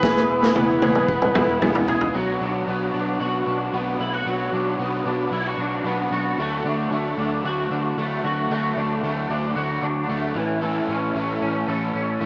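A straight 4/4 pulse at 113 BPM carries this bittersweet, restless fragment of jangly indie pop in B dorian, opening with a punchy, gritty drum fill from the raw garage kit that ends at 2.1 seconds. In those first moments, a smooth, dark lead guitar sounds a brief B4 melody through analog delay, while a woody upright piano adds very quiet accompaniment until 2.2 seconds. Throughout, an electric guitar through a small old amp plays bright, twangy, slightly broken-up arpeggios up front, coloured by ensemble chorus and analog delay. Beneath it, a raw garage guitar gives warm, overdriven, picked accompaniment, and a vintage muted bass keeps a round, foam-muted low end as the harmony moves from E to Bm, D and A. Moderate large studio reverb and small room ambience surround the parts, and the whole recording carries the worn, warbling pitch drift of old cassette tape and a small speaker sound.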